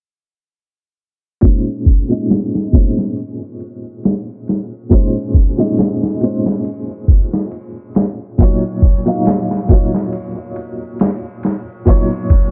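Smoky and cinematic, this trip hop excerpt in Bb minor moves at 69 BPM with a light 16th-note swing, as a dark, woody, slightly detuned upright piano with sampler grit, tremolo, tape echo and a filter sweep plays Bbm11 then Bbmadd11 chords alongside a gritty, overdriven, thumpy sampler-style drum kit with a medium-tuned snare, both entering at 1.4 seconds, up front and dry under a dull, low-passed sheen.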